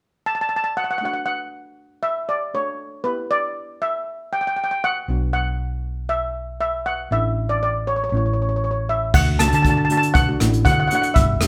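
A lead steel pan carries the melody in this sunny, carefree calypso, its metallic shimmer struck with medium rubber sticks and sitting up front from 0.3 seconds. At a straight 118 BPM in 4/4 and D major, a second steel pan of double seconds joins with accompaniment at 1.0 seconds, bright and close-miked, dry and full under the lead. A hollow-body short-scale electric bass, played with the fingers, enters at 5.1 seconds with a dark, round, amped tone as the chords move from D through Em and Bm to Asus4 and A. At 9.1 seconds, as the harmony returns to D, a jazz kit played with brushes arrives with crash cymbal, hi-hat, rim click and a boomy kick, its dark cymbals and airy, polished room sound rounding out the band. The group plays live together in one room with moderate studio reverb, and the clip is cut from a longer piece.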